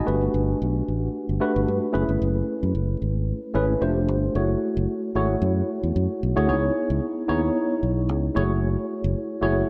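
This polished 1980s jazz-funk pop cut, taken from a longer piece, has a glossy, breezy mood at 112 BPM in 4/4, with a gentle swing on the sixteenths. A tine electric piano carries the accompaniment from start to finish, its worn, slightly out-of-tune tone lightly overdriven, thickened by a lush chorus and coloured as if heard through built-in speakers. Beneath it, a fingered electric bass sits up front with a dark, round, direct sound, spanning the low register for the full length of the clip. The harmony moves through rich extended chords, opening on Gmaj9, F#m11 and F69 before a second section at 4.4 seconds turns to F#m9, C#m9 and back to F#m9. Light reverb and a digital ambience give the mix a soft sheen.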